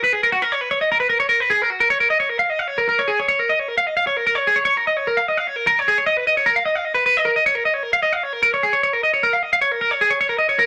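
Rock in a straight 7/8, wistful in mood, this short fragment of a longer piece features a solo twelve-string electric guitar, picked clean, twangy and compressed, sitting bright and up front in a wet studio reverb and playing from start to finish across its 10.7 seconds, with a change of section at 1.9 seconds.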